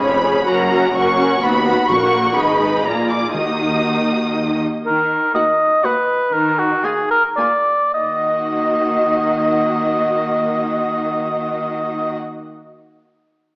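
Heard through a narrow AM-radio filter and a drenched scoring-stage reverb, this stormy, urgent classical-period orchestral movement in triple time presses forward with a rubato feel and eases back in its middle stretch. Violins carry the high, expressive melody with vibrato and portamento over a softer, lush second violin line, a distant viola accompaniment and a focused cello bass. Bowed double basses sit in the background until 4.6 s, round, very quiet timpani on calf heads appear at 1.9 s, and an up-front solo oboe enters at 4.9 s with a second line of light vibrato.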